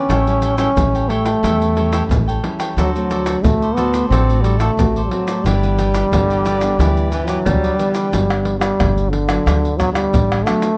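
A warm, up-front trombone sings a sunny, festive samba and choro melody with vibrato and scooped notes over crisp picked cavaquinho, a full-bodied fingerpicked nylon-string guitar with finger squeak, woody pizzicato upright bass and a vintage, band-limited percussion section of tube shaker, deep surdo, pandeiro and tamborim struck with hard hands, while a breathy, mellow tenor saxophone adds a subtone second line in the background from 6.1 seconds until 8.1 seconds, when both it and the cavaquinho drop out, all caught by close, detailed microphones in a dry room.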